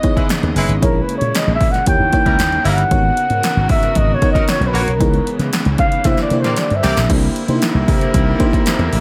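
Glossy and upbeat, this short cut from a longer piece is polished 1980s jazz-funk pop at 115 BPM in a straight 4/4, with a dry, close sound overall. A breathy, mellow flugelhorn carries the melody as a jazz-style solo from the start until 7.1 seconds, its light vibrato and scooped notes giving it a vintage character. Beneath it, an FM electric piano layered with a soft pad adds lush, dreamy chords with a subtle chorus, while a bright string section holds sustained harmonies in the background. A warm, distant horn section plays a second line from 0.2 seconds, and a growly slap bass with an envelope filter joins at 0.4 seconds with a punchy, amped tone. Up front, a punchy analog drum machine with gated reverb drives the groove with kick, snare, hi-hat and crash, and a drum fill between 6.1 and 7.1 seconds leads into a new section as the harmony moves through rich chords such as C#m9, G#m11 and C9.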